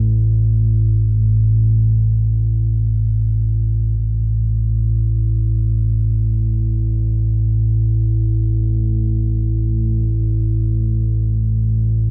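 Cavernous and desolate, this free-time ambient piece, cut from a longer work and tuned to A4 = 438 Hz, features a solo deep rumbling drone, dark and ominous with a triangle-and-sawtooth tone, slow attack and long release, sitting up front between A1 and A2 from 0.0 to 12.1 s, bathed in its own built-in reverb and a moderate cathedral reverb lasting 5.0 s, all heard through worn, warbling old cassette tape with warbly pitch drift.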